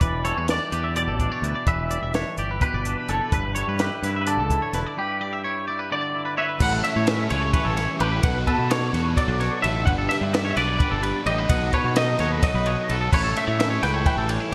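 A bright, 1980s-style digital sheen with a touch of lossy compression grit and a moderate plate reverb frames this wistful, playful math rock and midwest emo passage in a lopsided 7/8, cut from a longer piece. A clean, picked electric guitar carries the melody with an ensemble chorus shimmer, while a compressed, fingered twangy guitar spins delayed arpeggios above a softer fingered guitar accompaniment tucked in the background. Up front, a growling fingered electric bass with overdrive punches through, paired with a compact cocktail drum kit whose dark, smooth tone, high-tuned snare and punchy kick sit under crash, ride and hi-hat. At 6.6 seconds a crunchy, double-tracked overdriven guitar riff joins with its own chorus, thickening the second section. The harmony moves from Em7 and G69 into a run of A9, B7sus4, G and B7 before landing back on A9.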